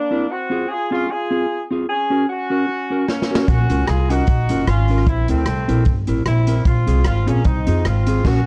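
Ska with a driving, energetic swing, heard in a short cut from a longer piece. A roomy horn section with light vibrato carries the melody from the start over a dark, clean fingered electric guitar, and a drum fill at 3.1 seconds brings in the polished, airy big-band kit with its punchy kick and the woody pizzicato upright bass sitting up front, moving from F minor through G-flat and B-flat minor. Moderate studio reverb and a cassette-tape character colour the sound, and the band lands an accent at 8.2 seconds.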